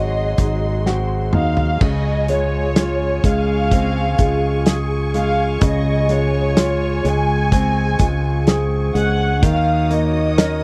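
A dry, close 1970s-style studio sound frames this heartbroken, longing pop ballad excerpt at 63 BPM, where a dark, woody violin section carries the melody over clear, short-sustained grand piano, a distant, focused string section holding lush chords, a fingerpicked parlour acoustic guitar with finger squeak tucked into the background, and an up-front fretless bass with analog chorus, while a loose indie drum kit with dark cymbals and a punchy kick enters at 0.4 seconds and plays a fill from 0.9 to 1.8 seconds as the harmony moves from Ab7 to Dbmaj7 and on to Ebm7.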